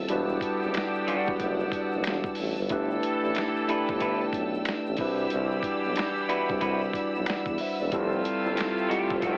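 A mellow tine electric piano sits up front in this sultry, late-night neo-soul and R&B excerpt, moving through Em9, G69, Cmaj9#11 and Fmaj9 in E minor at 92 BPM with a 16th-note swing. A dusty, sampler-style drum kit with a thumpy kick, medium-tuned snare, hi-hat and finger snaps carries a gritty, tape-warm feel, backed by an egg shaker and finger snaps set close but in the background. A warm tuba with light vibrato and a soft attack holds the bass in a vintage jazz style. Lush bowed strings sustain woody chords high above, while a clear horn section adds smooth-topped pop stabs. At 0.7 seconds an electric guitar enters through a small old amp, slightly broken-up, fingered and lo-fi, playing a second line up front. The whole mix is heavily compressed into an AM-radio sound with light reverb.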